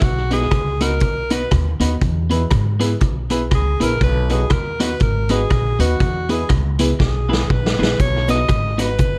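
Joyful and cheerful, this short ska clip from a longer piece swings lightly in 4/4, moving between B and E chords. A bright alto saxophone carries the melody as a solo throughout, its light vibrato and present, pop-style tone sitting over a woody, growly upright bass played pizzicato and placed up front. The vintage drum kit, with its punchy kick, medium-tuned snare, rim click and hi-hat, has a saturated, gritty character with a rolled-off top and tape echo, and it plays a fill from 7.0 to 8.0 seconds. A clean, twangy electric guitar and a dark, mellow upright piano enter at 0.3 seconds, the guitar compressed and picked while the piano adds stabs, both carrying tape echo. A grainy cabasa slips in very quietly at 8.0 seconds, all within a small room ambience and a dark, warm production.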